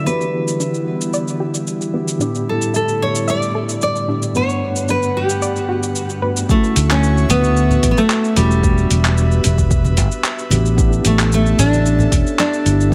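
A straight 4/4 groove opens this sunset chillout excerpt, carried by a gritty, compressed sampler-style kit of handclaps, hi-hat and shaker with a touch of overdrive. At 6.5 seconds a deep, layered electronic kick joins, followed by a punchy, amped fingered electric bass at 6.8 seconds and quiet, close, dry congas with a bright, thin skin at 7.3 seconds. Up front, a full-bodied nylon-string guitar carries the fingerpicked melody with delay, over a mellow, clean tine electric piano that also uses delay. An airy, breathy pad with chorus and a slow attack sustains the chords, while a soft, round, dark pluck plays arpeggios in the background through chorus and delay until 6.5 seconds, and both synth parts carry filter sweeps in the opening half. The harmony moves smoothly through Em7, A7sus4, Gmaj7 and Dmaj9 under light reverb, giving the cut a relaxed, smooth glow.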